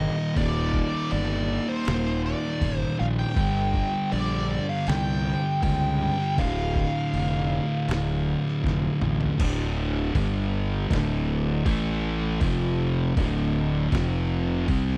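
A dry, close recording with a 1970s studio character frames this sludgy, hypnotic excerpt of stoner and doom metal, moving at a slow 80 BPM in straight 4/4 and set in D phrygian. Two thick fuzz guitars grind out the riff throughout, one dark and up front, the other mellower and sitting in the background, while a growly, punchy fingered bass with overdrive holds the low end alongside them. A fuzz lead guitar carries the melody through wah, distortion and tape echo until 8.6 seconds, when a drum fill takes over. The drums, entering at 0.4 seconds, have a gritty, pitched-down sampler feel borrowed from trip hop, with a thumpy kick, medium-tuned snare, toms and crash cymbal, compressed and re-recorded in a large room. The opening passage moves through Eb, Gm and Dm, and from 9.4 seconds the riff shifts to a run of power chords on D, G, A and F.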